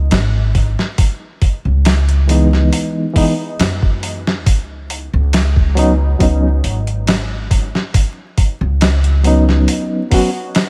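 A slow trip hop groove at 69 BPM in 4/4 with a light swing on the sixteenths, carried by a gritty, compressed sampler-style drum kit with a thumpy kick, medium-tuned snare and hi-hat, alongside a woody pizzicato upright bass sitting up front. At 2.3 seconds a clean, reedy electric piano enters with fast tremolo and tape echo, moving from C#m9 to Badd9 at 4.5 seconds. Light reverb and vinyl crackle give this melancholic, brooding cut from a longer piece a dusty patina.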